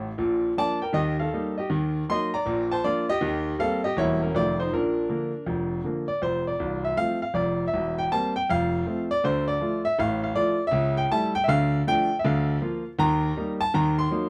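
A grand piano fill opens this exuberant, playful stride jazz piece, cut from a longer performance, and the solo grand piano carries the whole 14.3 seconds alone. The swung 4/4 feel keeps things buoyant as the piano ranges from C1 up to C6, tuned slightly low at A4 = 435 Hz. Its tone is clear and a little boxy, with short sustain and an up-front placement, set in a light reverb. The opening passage moves through Bb, Eb and a darkening Ebm, passing an Edim7 and F7 before landing back on Bb. At 6.2 s a second section begins, cycling through F, C7/E, Dm and A7/C#, then closing on Bb/D, Eb and Ebm.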